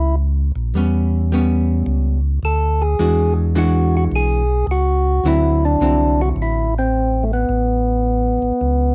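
A swung 107 BPM groove in 4/4 drives this bluesy, soulful soul jazz organ trio excerpt, cut from a longer piece and moving through A9, E9, D9 and Aadd9. A fat, lightly overdriven tonewheel organ with third-harmonic percussion and key click carries the melody through a stopped rotary speaker, while a second, round and dark tonewheel organ holds down the bass with vibrato through a slow-turning rotary speaker. A clean, picked hollow-body archtop guitar adds dark accompaniment from 0.8 to 6.7 seconds, all of it heard up front through close, detailed microphones with light reverb.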